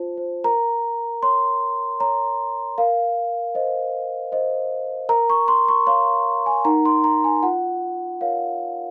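Fragile and faintly eerie, this short classical lullaby excerpt, cut from a longer piece, is carried entirely by a large solo celesta. It moves in a gentle 3/4 at 77 BPM with a straight feel, settled in B-flat minor. The celesta sits up front with a bell-like, sweet tone from soft felt hammers, its notes ringing full and mellow between Eb4 and Db6. Light reverb gives the instrument a little air while keeping it close and delicate. The harmony turns from Bbm through F5/Bb and back, touching Ebm at 6.6 seconds before resting on Bbm/F at 7.4 seconds, as the passage runs to 8.9 seconds.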